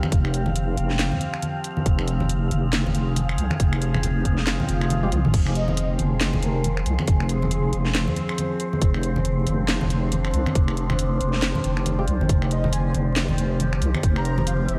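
Opening on an Fmadd9 drone of resonant, sweeping overtones with an airy wind-like noise texture, a garage kit of cracking snare, finger snaps and handclaps, and background congas, this meditative, brooding deep dubstep excerpt in F dorian sits at a half-time 138 BPM with a 16th-note swing, anchored by a tight, up-front kick and a dark, up-front wobble bass, while a hollow organ stab with dub echo first sounds at 5.0 s over a swell and drum fill, a breathy flute-like lead with vibrato enters at 5.6 s, and vinyl crackle runs through the whole clip.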